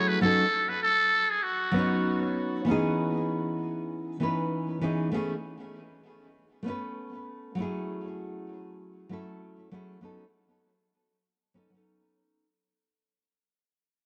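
Relaxed and warm, this chillout fragment cut from a longer piece opens with a buzzy, raspy metal-muted trumpet playing a brief jazz-style solo melody with vibrato and scooped notes until 2.4 s, while an up-front fingerpicked nylon-string guitar with audible finger squeak carries the accompaniment through B9, C#m9, A and F#m9 chords, both parts touched by digital delay in a dark mix with moderate plate reverb, as the music fades out from 2.7 s to its end at 12.5 s.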